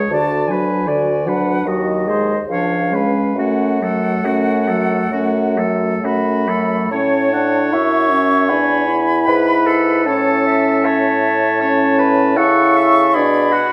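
A pure concert flute with vibrato carries the melody over a distant oboe second line, clear clarinet, soft-edged French horn and mellow bassoon bass in this elegiac, melancholic excerpt from a slow romantic classical movement for wind quintet, moving with rubato at 63-80 BPM in 4/4 from F# minor to A major at 6.9 s, all set in a wet recital hall reverb.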